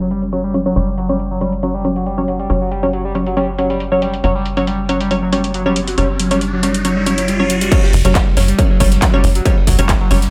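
Heard through a moderate stone-room reverb and a low-pass filter, this relentless, dark peak-time techno at 138 BPM opens with a screaming, gritty overdriven synth lead riff carrying phaser and digital delay, a punchy sawtooth sequencer bass and crisp, detuned wavetable chord stabs with dub echo, all three pumping to the sidechain, over a techno drum kit of metallic hats, handclaps and crash; filter sweeps run on the drums and stabs, an electronic riser enters at 5.5 s, and the drop at 7.7 s brings in a distorted, up-front electronic kick and a very quiet, distant brushed acoustic kit with dark ride, hi-hat and snare.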